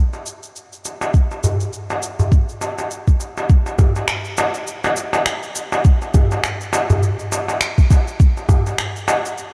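Electronic cabasa and finger snaps with a tape-warm, small-room sheen open this meditative, earthy downtempo excerpt at 102 BPM in swung 4/4, joined at once by a crisp, deep metal-shell darbuka heard in a large room, before a soft, up-front electronic kick drum enters at 1.1 s and the dark, lightly reverberant groove moves into a new section at 3.5 s.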